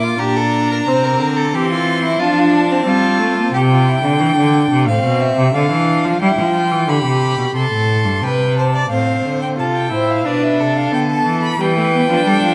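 Contemplative yet driving, this baroque-style fugue for string quartet moves at 90 BPM in 4/4 in F major, a short cut from a longer piece with a harmonic path that passes through Bm7 and ends on Em. A rich, vibrato-laden first violin carries the melody high above a clear second violin line, while the up-front cello anchors the bass with focused bowing. The viola's rich accompaniment drops out at 3.5 seconds and returns at 8.9 seconds as the second section begins, all set in a reverberant recital hall.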